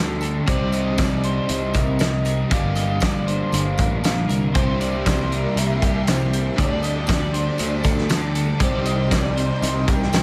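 Layered guitars open this brooding, melancholic shoegaze and dream pop excerpt: a slightly broken-up guitar picks arpeggios through analog chorus and slapback echo, while an overdriven guitar riff trailing reverse reverb and a dark fuzz riff thickened by ensemble chorus sit in the background over a direct, amped picked bass. From 0.2 seconds a loose indie drum kit with a fat snare, punchy kick and gritty, saturated tone sits up front beside a jingly, very quiet tambourine, and from 0.5 seconds a round, horn-like synth lead with vibrato carries the melody over Cm7, Gm7, C7 and Dsus4 chords. At 4.5 seconds a swirling, vintage string machine adds phased sustained chords, and the whole mix sits in light reverb.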